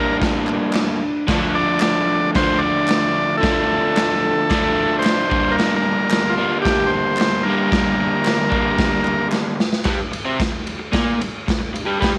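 A lightly reverberant, up-front mix opens this gritty, menacing excerpt of garage rock in G minor at 112 BPM, moving from Gm to Dm and back. A buzzy vintage combo organ carries the melody until 9.3 seconds over a crunchy, double-tracked overdriven guitar riff, while a raw acoustic drum kit with a punchy kick and saturated, rolled-off tone drives a straight 4/4 and crisp handclaps sit in the background. A drum fill at 9.3 seconds leads into a new section, where guitar and drums carry on to the end.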